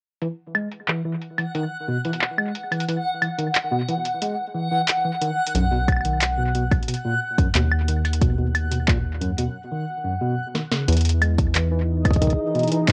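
Recorded at home on cassette in a modest booth with a short, close ambience, this wistful, intricate IDM fragment carries a tape haze on most of its parts. A bright, clean tine electric piano, heard through its built-in speakers, spins arpeggios from the start under a low-pass filter and analog delay. Alongside it, a dry, booming analog drum machine sets out crisp snare, metallic hi-hats, handclaps and woodblock in a straight 4/4 feel. Soon a reversed, swelling, granular triangle texture drifts in high above, dreamy and soaked in its own reverb, with sidechain pumping. A rubbery, hollow square bass with a resonant filter pluck arrives at 5.5 seconds, followed closely by a deep electronic kick, both up front as the harmony moves from Esus2 to B. After a break at 9.5 seconds and a short drum fill, a swirling, detuned sawtooth pad with phaser and chorus enters on Emaj7 at 10.9 seconds and joins the other parts through the close of the excerpt.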